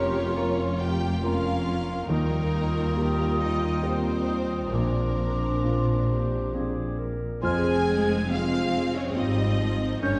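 This cinematic, emotional film score for orchestra moves at a rubato 69 BPM in 3/4 and F minor, a brief cut from a longer piece with a longing, bittersweet mood, where a lush, vibrato-rich violin section carries the melody over a second violin line, a dark clarinet, a distant cor anglais and a pure, crisp-attacked silver flute high above. A rich viola section, a warm, vintage-toned grand piano and a mellow French horn section holding sustained chords fill the middle, while an expressive cello section with portamento and a soft-attacked double bass section anchor the bass. The harmony drifts from Bbmadd9/F through Ebadd9 and Bbadd9 before settling on Fm at 7.4 seconds, all heard from further back in a scoring stage with a wet reverb of about 1.7 seconds and a gently dulled top end.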